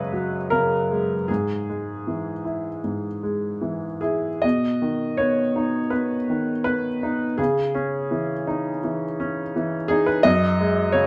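A clear upright piano opens alone on a suspended chord, its woody, vintage tone sitting up front with a long, smooth sustain. This is neoclassical minimalist piano in 4/4, played with a gently rubato feel that gives the music a tender, hopeful mood. The harmony drifts through open, suspended and added-note chords, and the opening phrase returns at 4.4 seconds, resolving onto a settled major chord before circling back toward the suspended sound near the close. The piano spans a modest range from its low register into the upper middle, keeping the writing spare and unhurried. A moderate small-room reverb gives the live performance a close, intimate air, and the short passage feels lifted from a longer piece.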